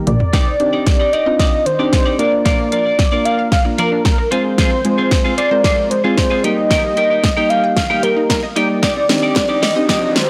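A straight 4/4 dance-pop groove drives this confident passage, led by an up-front electronic kit with a punchy kick and a fat, softly clipped snare that opens on a short drum fill before the music builds under a filter sweep. A velvety sawtooth lead with vibrato and digital delay carries the melody over round, chorused electric-piano-like synth keys with sidechain pumping, a lush detuned unison pluck playing arpeggios in the background, and a bright, twangy twelve-string electric guitar riff, all moving through Cmadd9, Bb, Fm and Eb. A very quiet, crisp group handclap lands at 9.4 s and a background riser enters at 9.5 s, while the recording as a whole sounds blown-out and overdriven with light reverb.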